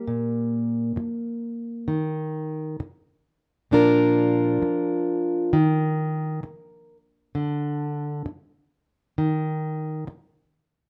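A light reverb gives this short cut from a longer piece a gentle sense of space around a single plugged-in steel-string acoustic guitar, which sits up front in the sound. It is a solo fingerstyle folk performance in 6/8 with a straight feel, moving at an unhurried 66 beats per minute counted in dotted quarters. The guitar has the full-bodied, jumbo resonance and warm ring of fresh strings, and its fingerpicked part spans from Bb2 to Bb4. The harmony rests on Bb5 and Eb5 shapes, with a full Bb chord at 3.7 seconds and a brief chordless moment at 7.3 seconds before Eb5 returns at 9.2 seconds. The mood is pastoral and gentle, and the guitar rings until 10.1 seconds.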